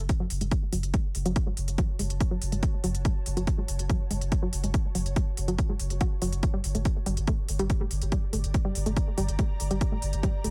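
A deep, thick saturated sub bass that pumps to the sidechain opens this dark, industrial slice of driving peak-time techno at 142 BPM, joined almost at once by a heavy, overdriven kick drum sitting up front and smooth, overdriven hi-hats. A round sawtooth-and-square analog pluck carries the riff with chorus, tube saturation and delay while a filter sweep runs across it, and from 1.2 seconds an ethereal, detuned pad fades in softly behind, bathed in ensemble chorus and its own reverb. The harmony moves from F# minor to G minor at 6.4 seconds inside a digital ambience, in a passage cut from a longer piece.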